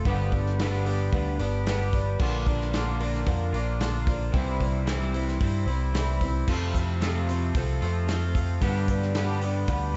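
A twangy, clean electric guitar riff and a boxy, woody old acoustic guitar open this hopeful, nostalgic folk rock and heartland rock clip, the riff dressed in lush chorus and dub echo, with a round, dark picked electric bass sitting up front and a natural country drum kit of tight kick, snare, hi-hat and crash joining them. The chords move from G through Bb, C and F before returning to G, all in an echo-heavy mix with little reverb and a muted top end. A grainy, very quiet egg shaker slips in at 6.5 seconds, and the clip is cut from a longer piece.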